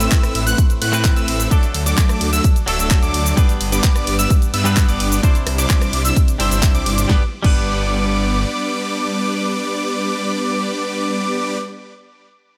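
Set in a light reverb and digital ambience, this excerpt from a longer festival progressive house track opens mid-drop in G major at 129 BPM, with a triumphant, anthemic mood. An overdriven, punchy electronic kick sits up front, layered with a pop drum kit that brings a fat snare alongside handclaps, rim clicks, hi-hat, shaker, ride and crash cymbals. A huge, euphoric supersaw lead carries the riff with a bright, compressed edge and a moving notch, while a thick unison lead adds high arpeggios with vibrato, and a twangy, clean electric guitar recorded direct plays picked accompaniment. Underneath, a lush detuned saw bass with chorus and saturation fills the low end, and the bass, leads and guitar all pump with sidechain compression, with delay on the guitar and both leads. The drop moves through Amadd9, D, G and Cadd9 before a new section begins on G at 7.1 seconds; the drums stop at 7.6 seconds and the bass at 8.4 seconds, leaving the leads and guitar ringing out to the end.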